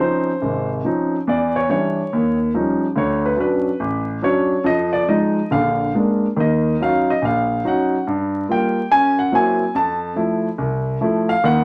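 Swinging eighths with a loose, rubato give carry this relaxed solo jazz passage, cut from a longer piece, where an intimate grand piano sits up front with long sustain and audible action noise, moving through rich chords from Dbmaj9 to a closing Fmaj7 across a span from Ab1 to A5, framed by moderate studio reverb and vinyl crackle.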